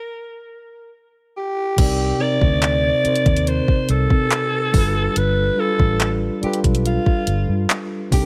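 Contemporary R&B at 71 BPM in C dorian, sensual and late-night, cut from a longer piece: a raspy, growling alto saxophone with vibrato and delay opens alone in a roomy, distant space before the band arrives at 1.8 seconds. The mellow tine electric piano, played clean through its built-in speakers, joins a dark, foam-muted fingered bass that is round and punchy, while a soft, produced drum kit with tape-warm hi-hat, kick, handclaps and crash sits up front. The harmony moves from Cm7 to G7 at 4.7 seconds, all wrapped in a digital ambience.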